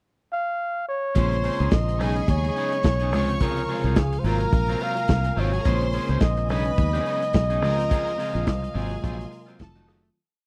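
A dry, close 1970s-style studio sound with small room reverb frames this short, driving and glamorous disco piece. A breathy, whispered flugelhorn states call-phrase motifs up front from 0.3 seconds and is joined from about 1.1 seconds by a muffled soul drum kit playing a four-on-the-floor beat with open hats on the off-beats, a round, foam-muted fingered bass line, choppy sixteenth-note guitar at the edge of break-up, held tine electric piano chords with grace notes, fast violin runs into held notes and a lush string pad in the background, until the recording fades out from 7.9 seconds.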